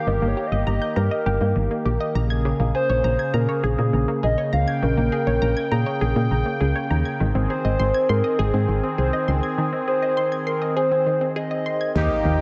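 A punchy, round FM bass sits up front in this melancholic yet driving synth-pop excerpt at 101 BPM, moving under Eb/G, Bbm7 and Ab chords. Above it, a hollow, woody clarinet-like synth lead carries the melody with vibrato, chorus, phaser and dub echo, while a smooth, warbling analog pad holds sustained chords and a nasal analog pluck spins arpeggios through its own phaser and echoes. At 12.0 seconds a fat, brassy analog synth brass part and an electronic impact arrive together, all set in a plate-reverb, echo-heavy mix.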